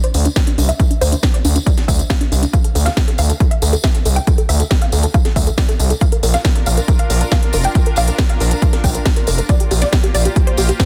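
A straight 4/4 pulse at 138 BPM drives this emotional, euphoric uplifting trance passage in D minor. A punchy, up-front electronic kick enters at 0.4 seconds beside a techno drum kit with a cracking snare and smooth hats, while a jingly acoustic tambourine sits in the background. Beneath them, a gritty, aggressive sawtooth bass with oscillator sync and a nasal, saturated edge sustains in the low register and pumps with sidechain compression. The melody comes from a full-bodied, detuned unison pluck with a wave-folded, decaying filter shape, pumping and trailed by dub echo. At 6.0 seconds a supersaw pad with a slow attack and long release adds lush, sustained chords that move from Bb to Gm7/Bb. The mix is dry, with little reverb, and sits in a dense, heavily limited modern master.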